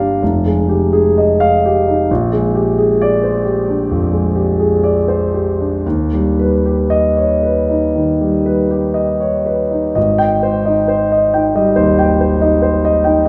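Serene and hazy, this impressionist classical fragment for solo concert grand piano unfolds in a free, rubato 4/4, drifting through rich chords such as Fm9, Bb13 and Ebaug7 before settling onto Abmaj7 at 10.0 seconds. The piano sounds warm and open, with deep bass, long sustain and an up-front presence across a span from F1 to G5. A wet concert hall reverb surrounds it, giving the feel of a church or concert hall, and the passage is cut from a longer piece.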